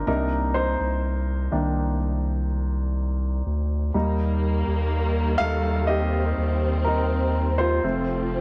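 Light studio reverb frames this short cut from a heartfelt, hopeful pop ballad at a slow 62 BPM in 4/4, where an open, up-front concert grand piano with a deep low end takes a solo over a thick, saturated sub bass through Cm7 and Eb toward F, and a lush, bowed string section with expressive vibrato and a smooth top enters at 3.9 seconds with sustained chords.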